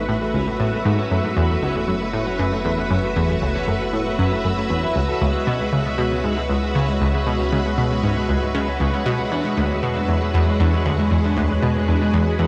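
This is ambient, sequencer-driven space music with a cosmic, expansive mood, moving at 117 BPM in a straight 4/4, cut from a longer piece. Up front, a bright, round analog pluck plays a riff in the low register. Its sawtooth and square-wave tones carry a noise layer, ring modulation and a filter sweep, with a fast attack, short decay, chorus and delay. Beside it, a lush, vintage string machine holds full-ensemble chords with a sub octave and slow attack, coloured by ensemble chorus and shimmer reverb. In the background, a dark, slightly broken-up electric guitar plays fingered arpeggios through delay and shimmer reverb, while a deep, mellow sine sub bass sustains underneath. From 0.9 s, a very quiet, bubbling texture of resonant, random filter steps hovers on a high C#. The harmony moves from Aadd9 to F#m7, C#m and E, all set in a moderate plate reverb with a cassette-tape character.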